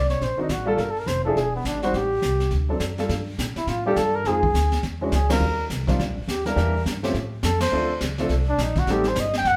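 A wet studio reverb surrounds a small jazz band playing live in one room, in a short cut of cool, late-night small-group swing and bop. The tempo is a brisk 208 BPM in 4/4 with a swung eighth-note feel, centered in G minor. Up front, a trumpet with a bucket mute carries the melody, its veiled, mellow tone still punchy and forceful with a smooth top. The pizzicato upright bass sounds woody and thumpy, and a brushed drum kit adds dark cymbals, a high-tuned snare and a boomy kick with a small-room character. The piano enters at 0.4 seconds, intimate and vintage, with deep bass and audible action noise, as the harmony moves through rich chords such as Gmadd9, E13 and Ebmaj13, and the full band hits accents at 5.3 and 7.6 seconds.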